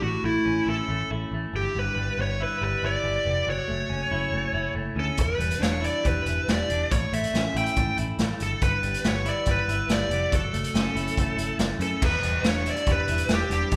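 Indie rock with a cool, bittersweet mood, opening on a dark, smooth overdriven lead guitar carrying the melody up front over a brilliant, double-tracked crunchy guitar riff and a picked electric bass with a warm tone captured both direct and amped, all cycling through A, Em7/G and F#m7 changes. At 5.2 seconds a raw garage drum kit enters up front, gritty and saturated with a punchy kick, medium-tuned snare, hi-hat and crash, its pumping small-room sound and rolled-off top giving it a rough edge. A moderate recital-hall reverb places the whole band in a church or concert-hall space, and the passage is cut from a longer piece, stopping at 13.8 seconds on Em7.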